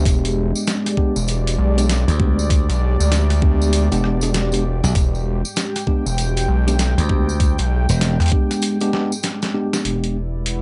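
A swung sixteenth-note groove in 4/4 drives this playful, swaggering glitch hop fragment, cut from a longer piece, with a knocking, overdriven electronic kick up front alongside a pitched-down, tape-gritty sampler-style kit of hi-hat, rim click and a medium-tuned snare, plus a jingly tambourine heard as if in a small room. Underneath, a driven sawtooth synth bass with oscillator sync and a resonant filter pluck growls aggressively, joined from 2.1 s to 8.2 s by a bright, punchy slap bass given tube saturation. A mellow, clean tine electric piano plays stabs with delay, while a deep, moody analog pad of detuned sawtooth and triangle waves with a sub octave sustains chords through chorus, both breathing with sidechain pumping over an E7#9 harmony. A break arrives at 8.6 s with a drum fill and a band accent, and in the closing moments a blurred, cloudy granular pad drifts in with its own reverb. 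The mix is dry and dark-toned, with the low end pushed forward.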